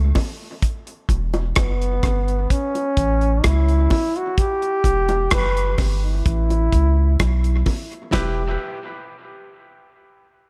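Dub reggae at a slow 64 BPM in 4/4 with a straight feel, this cut from a longer piece sits in E dorian and feels spacious and hypnotic, moving back and forth between A and Em. A breathy trombone carries the melody up front with a whispered, intimate tone, light vibrato and scooped notes, its phrases trailing off into dub echo. Beneath it, a soft, round sub bass holds the bottom from the first moment, while a damped 70s drum kit enters at 0.2 seconds with a dry, tight sound, dark cymbals and rim clicks. Low-tuned bongos played with soft hands add a round, quiet layer and also feed into the echo. Near the end, at 8.1 seconds, a clean semi-hollow electric guitar and a slightly broken-up guitar playing tremolo arpeggios in the background make a brief appearance, both soaked in echo, as the music moves into a new section. Light reverb and heavy echo give the whole mix its cavernous depth.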